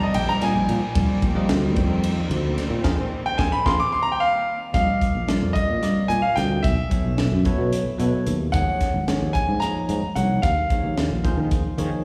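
Heard through a venue's PA with recital-hall reverb, this bright, funky electric jazz fusion excerpt in 7/8 at 221 BPM carries a brilliant, up-front concert grand piano melody with slapback and tape echo, soloing through the first 4.7 seconds, over a bell-like tine electric piano with subtle chorus, lush bowed strings that hold chords until 4.7 seconds, a growly fretless bass, and a crisp drum kit with a high-tuned snare and punchy kick, as a band accent and drum fill lead into a second section of suspended chords.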